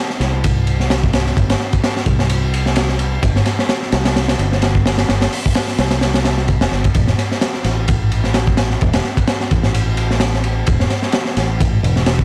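A swung, 4/4 breakbeat groove drives this gritty, swaggering breaks excerpt, where a crunchy, up-front acoustic drum kit with a high-tuned snare, tight kick, dark cymbals and a rolled-off, saturated top rides alongside a round, tube-saturated fingered electric bass in the low register, all set in a dry room under a layer of vinyl crackle.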